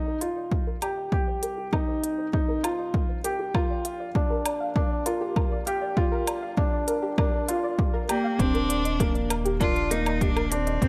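Tender and hopeful, this short piano-and-strings electronica piece pairs a felt-muted upright piano riff with tape echo against a deep, round analog bass and soft, chorused pluck arpeggios that pump with the sidechain, while overdriven electronic kick, crisp hi-hats and woodblock drive a build-up marked by a filter sweep on the arpeggios; just before the drop at 8.4 seconds, a rich, bowed cello enters at 8.1 seconds and carries the melody with vibrato through a moderate echo-chamber reverb.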